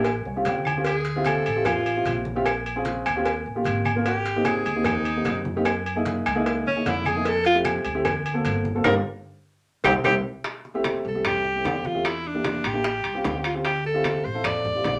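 A breathy, clear alto saxophone with vibrato and subtone sits up front, taking a jazz solo from 0.9 s over a dark, mellow upright piano in this sunny, sophisticated Afro-Cuban jazz excerpt at 150 BPM, where growly pizzicato upright bass, bright low-tuned congas and woody claves in the background, tight high-tuned cowbell and bongos, and ringing vintage agogo bells and timbales fill out a small reverberant room before a band accent and drum fill lead into a new section at 10.4 s.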